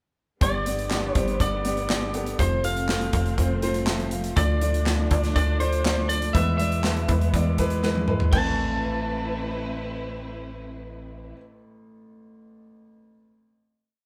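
A lightly driven electric lead guitar, dark and slightly broken-up, carries a picked, motif-based melody through this short, complete piano-driven pop piece in A minor, running at 121 BPM in a straight 4/4 with a bittersweet yet driving mood. Beneath it, a clear, woody upright piano with audible action noise plays chords in an eighth-note rhythm with short fills, while a plucky analog bass, punchy and round with a filter pluck, holds down a sustained bass line. A polished acoustic drum kit sits up front with bright cymbals and a tight kick, laying a pop backbeat where the snare is layered with handclaps, and a drum fill from 7.8 to 8.3 seconds leads out of the verse. Lush symphonic strings with vibrato and portamento hover in the background as a sustained pad. The verse moves through G, F, Dm and E before settling on a final Amadd9 chord at 8.3 seconds. Guitar, bass and strings hold it until around 11.4 seconds, after which the piano rings on alone until 14.1 seconds in a moderate large-room reverb that suggests a band playing live together.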